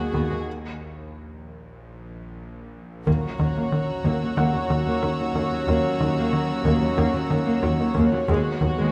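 Heard through a moderate scoring-stage reverb in a dark, warm production, this mysterious, eerie suspense cue in Eb phrygian moves at 92 BPM, with close, sul tasto violins floating a soft-attack melody over a second violin line. Beneath them, woody viola and cello sections, a rich double bass section, a tense, bright bowed-like synth drone and a punchy, funky plucked analog bass riff form a brooding bed. At 3.1 seconds a mellow French horn section adds sustained chords, high violins bring a pure texture, and at 4.4 seconds a clear, intimate baby grand piano with audible action noise enters in the background.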